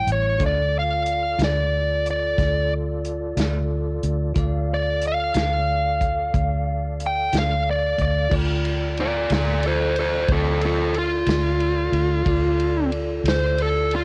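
A dry, homespun cassette recording carries this smoky, soulful slow blues in D minor, moving at 61 BPM in a straight 12/8. A smooth, overdriven lead guitar sits up front over a round, foam-muted fingered bass, a distant, roomy soul drum kit with dark cymbals and cassette tape coloring, a soft, flute-like tonewheel organ with chorus vibrato and key click, and a bell-like tine electric piano in the background. A slightly broken-up, compressed rhythm guitar with harmonic tremolo plays from 0.4 to 7.5 seconds, and the lead guitar takes a solo from 8.3 seconds in this passage cut from a longer piece.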